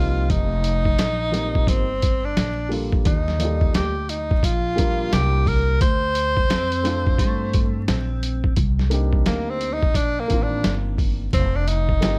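A swung 87 BPM groove in 4/4 sets this cool, mellow jazz-hop cut, taken from a longer piece, in C dorian, with a sampler-style boom bap kit entering at 0.3 seconds: compressed, pitched down and gritty, with a thumpy kick, a medium-tuned snare and hi-hat, sitting up front with a tape-warm small-room character. Underneath, a pizzicato upright bass on gut strings gives a woody, dark low end. A dark concert grand piano supplies smooth, vintage-toned accompaniment with short sustain, moving through chords such as F9sus4, Ebmaj9#11 and Dm7. Out front, a breathy tenor saxophone carries the melody with vibrato, scooped notes and a slapback echo, then steps into a solo from 8.6 seconds over Cm9. A clean, fingered electric guitar with analog chorus adds a brief second line from 6.5 to 8.5 seconds. Vinyl crackle and small room ambience frame the whole recording.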